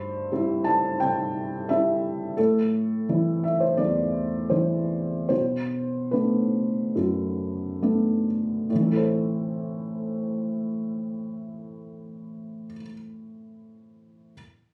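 Wistful and reflective, this short neoclassical minimalist piano passage, cut from a longer piece, unfolds in a rubato 4/4 around 67-88 BPM in A dorian, slowing from 1.0 to 8.7 seconds as the harmony moves from C/G through Am to Bm7 before settling back on Am when a new section begins at 8.7 seconds. A solo felt-muted upright piano, spanning E2 to A5, sounds mellow, intimate and boxy, placed up front with the soft clatter of its action clearly audible. Captured on a phone in the room with a light touch of studio reverb, the recording feels close and private.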